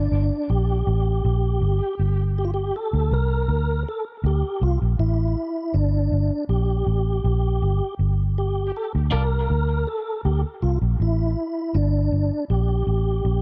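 Soaked in digital ambience and dub echo, this heavy, hypnotic dub reggae excerpt moves at 80 BPM in a straight 4/4, swaying between G minor and a D power chord. Up front, a dark, foam-muted fingered electric bass with an amped, rounded tone anchors the low end while a mellow tonewheel organ carries the melody, its key click and chorus vibrato spun through a fast rotary speaker. At 9.1 seconds a bright, twangy clean electric guitar darts in for a single picked, echoing touch.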